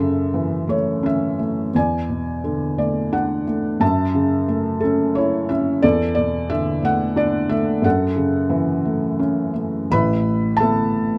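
A felt-muted upright piano opens the recording alone, its soft, mellow tone sitting up front and intimate under close, detailed microphones. This is lyrical solo classical piano in F# minor, tuned to A4 = 444 Hz, moving in 3/4 at around 88 BPM with a rubato, breathing feel. The cool, moody harmony sways between F#m7 and suspended E chords, spanning from A1 up to B5 in the register. The thin felt gives the instrument a smooth, vintage character, and light reverb adds a touch of space around it. At 9.9 seconds the music turns to a new passage on an Asus2 chord, and the piece is cut off at 11.2 seconds as part of a longer work.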